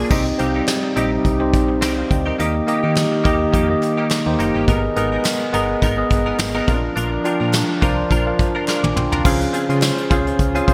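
Nostalgic and uplifting, this excerpt from a longer 1980s-style pop piece moves at 105 BPM in 4/4 with a light sixteenth-note swing, riding a chord sequence of Cm, Eb, Abmadd9 and Bb before shifting to Dbmaj7 at 9.3 seconds. A clean tine electric piano sits up front carrying the accompaniment, while a bright, twangy, direct-recorded electric guitar plays a compressed, picked riff dressed in ensemble chorus and delay. Underneath, a punchy, round FM bass with a fast, decaying attack supplies a dark digital low end, and a shimmering pulse-width pad with slow attack and long release holds sustained chords in the background. A soft brush drum kit, natural and up front with a punchy kick, medium-tuned snare, hi-hat, toms, tambourine and crash, is treated with gated reverb and plays a fill from 8.7 to 9.3 seconds. Very quiet, distant group handclaps from a large room join at 0.7 seconds, all framed by a moderate plate reverb and a bright 1980s-style digital production.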